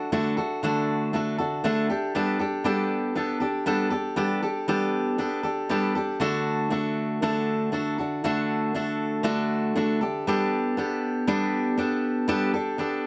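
Pop in G major at 118 BPM, this short, easy-going excerpt features a single fingerpicked steel-string acoustic guitar playing alone from 0.0 to 13.1 s. The feel is carefree, with a light 16th-note swing giving the 4/4 groove a relaxed lilt. The jumbo-bodied guitar sounds full and up front, and finger squeaks add a human touch as it moves between D and Gadd9 chords within a range from D3 to A4. A second section begins at 6.2 s, returning to D before shifting again to Gadd9 at 10.0 s. A modest small-room reverb gives the guitar a close, intimate setting.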